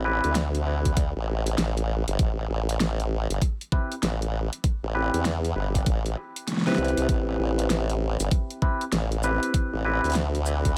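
Heard in a digital ambience, this funky, playful glitch hop piece is cut from a longer track and moves at 98 BPM in 4/4, with a 63% swing on the sixteenths, in A minor over an Am7 chord. A formant-sweep wobble bass carries the low end from G1 to E2. Its sawtooth and sine tones wobble through a formant filter with a fast attack and sustained, compressed notes, thickened by chorus and tube saturation and placed up front. A barky tine electric piano plays stabs between C4 and B4, lightly overdriven through a combo amp and colored by phaser, sidechain pumping and tape echo. A layered pop drum kit of hi-hat, rim click, shaker and a fat snare with warm hats is overdriven, re-recorded in a small room and sits up front. At 0.9 seconds a knocking electronic kick joins, also overdriven, up front and re-recorded in a small room.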